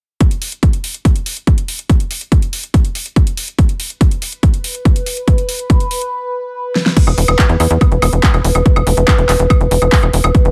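Psychedelic trance at 142 BPM in a straight 4/4, this short cut from a longer piece has a driving, psychedelic mood and a dry, close sound. A heavy, tape-warm electronic kick sits up front from the start alongside an overdriven big-room drum kit with a huge snare, metallic hi-hats, handclaps, crash cymbal and woodblock. At 4.7 seconds an overtone-sweeping drone enters on B4, its resonant sawtooth and sine tones swelling in slowly and sustaining with chorus, phaser, built-in reverb and sidechain pumping. After a break and a drum fill, the music lands on an E5 chord at 7.0 seconds, and a tight, punchy sequencer bass arrives up front, its nasal, evolving filter plucks moving between E1 and E2. A very quiet, squelchy blip pluck with a detuned, bright square-and-sawtooth edge flickers between A3 and B3 for about a second.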